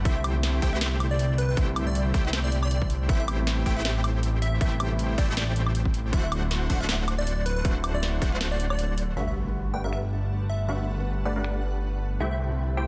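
This future bass excerpt opens straight into a playful, euphoric drop, with a fat, detuned analog bass sitting up front beneath punchy sawtooth supersaw stabs and a soft, felt-muted upright piano whose action noise is audible in the background behind its tape echo. Almost at once a catchy square-wave unison lead enters carrying the melody, its vibrato and moving notch giving it a lively edge, while a hard-clipped, overdriven electronic kick and a trap kit of sharp snare, metallic hi-hats, finger snaps and woodblock drive a swung, half-time feel. The bass, stabs, piano and lead all breathe with sidechain pumping as the harmony moves from C6 through Am7 to D7. The kick falls away at 8.4 seconds, and at 9.2 seconds an electronic impact lands as the supersaw stab sweeps through its filter over a Gmaj9 chord. From 10.0 seconds a shimmering, ethereal pad with octave-up sparkle and granular chorus drifts in quietly, the trap kit stops at 11.5 seconds, and the passage returns to C6 inside a dense, heavily limited master with light digital ambience.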